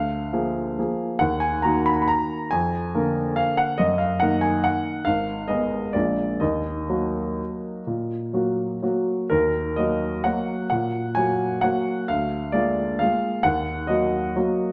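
A classical piano waltz in Eb minor, this short passage from a longer piece feels bittersweet and nostalgic, its 3/4 pulse bending with rubato between 119 and 149 BPM. A solo grand piano, clear, present and up front, spans Ab1 to Cb6 as the harmony circles between Bb7 and Ebm, with a brief turn to Abm, before a new section begins at 9.3 seconds. The production is dark and warm, set in a moderate scoring-stage reverb with a 1.9-second decay.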